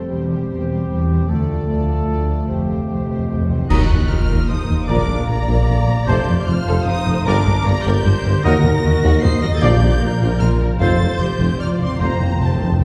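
In a straight 3/4 at 152 BPM, this heroic, soaring cinematic adventure cue, cut from a longer piece, opens in F major with a rich, expressive violin section carrying the melody over a second, quieter violin line, lush violas, dark woody cellos, intense double basses, sustained chords from a dark trombone section, clear trumpet stabs and ringing harp arpeggios, while a cymbal swell with clash cymbals and concert bass drum enters at 1.3 s and round timpani fill in at 2.5 s, before a band accent at 3.7 s shifts to Bb major and brings in a bright clarinet, a clear oboe and an airy silver flute on second lines, mellow French horn chords and a soft tuba bass, all set back in a roomy scoring-stage reverb.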